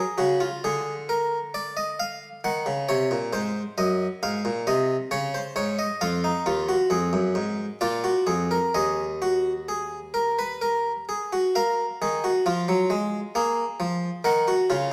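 In a steady 3/4 at 67 BPM with a straight feel, this solemn, serious passage from a longer baroque-style fugue in three voices moves at an unhurried, deliberate pace in Eb minor, tuned to A4 = 441 Hz. A single Italian-style harpsichord with one set of strings carries every voice alone, spanning Eb2 up to Gb5. Its plucked tone is round and full, miked close and up front, and it sits within the lingering wash of a recital hall. The harmony circles around Eb minor through Ab7, Db5, a suspended Ebsus24 and the dominant Bb7. At 11.6 seconds the music turns to a new section that settles on Bb5 before returning to Eb minor at 14.3 seconds.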